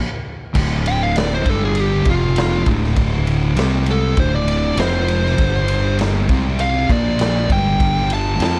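A straight 4/4 pulse at 99 BPM drives this ominous, brooding stoner and doom metal excerpt in D minor. After a half-second of silence, a raw garage drum kit sits up front with a punchy kick and a medium-tuned snare, crash and ride. Two thick fuzz guitars grind out a dark riff in the background over power chords moving between D5, G5, F5, C5 and Bb5, while a growly, overdriven fingered bass holds down the low end. From 0.9 seconds a fuzz lead guitar with digital delay plays a solo melody up front, all within a dry, dark production.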